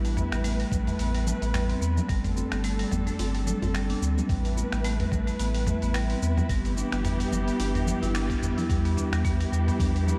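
Woody, bright marimba arpeggios with tape echo run through this hypnotic, mystical organic downtempo excerpt at 109 BPM with a swung 16th feel, over sustained chords from a rich, bowed chamber string section carrying vintage 12-bit sampler grit and sidechain pumping, a round sine sub bass, a dusty, compressed sampler-style kit of cabasa, finger snaps, hi-hat and toms, soft-handed bongos and congas kept very quiet, and a thumpy electronic kick from 0.7 s, while a metallic bronze singing bowl rings in at 8.7 s over an Em7 chord, set in a dark production with light reverb.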